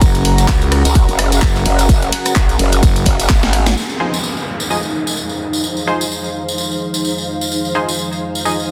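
A swung 4/4 groove at 128 BPM drives this gritty, bouncy bass house excerpt in F phrygian, cut from a longer piece and opening straight into a drop over a Gbadd9 chord. A punchy, up-front electronic kick leads a layered house kit of handclaps, hi-hat, ride, rim click and a cracking snare, its hats, cymbals and snare softened by low-pass filtering, joined faintly by a very quiet acoustic studio kit with a medium-tuned snare and a jingly tambourine that plays throughout. Two growling bass parts carry the low end, a thick FM bass until 3.0 seconds and an aggressive, wobbling, saturated growl bass with formant filtering from 0.9 seconds, while a deep, moody analog pad with a sub octave and an ethereal, airy pad with ensemble chorus sustain beneath, all pumping against the kick. A drum fill and a band accent close the drop before the drums and basses fall away at around 3.8 seconds, where the harmony moves to Fm7 and a filter sweep begins on the analog pad. 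In this second section an electronic downlifter descends in the background and a nasal, band-passed sawtooth chord stab with dub echo enters at 4.0 seconds, all sitting in light reverb within a dense, heavily limited modern master.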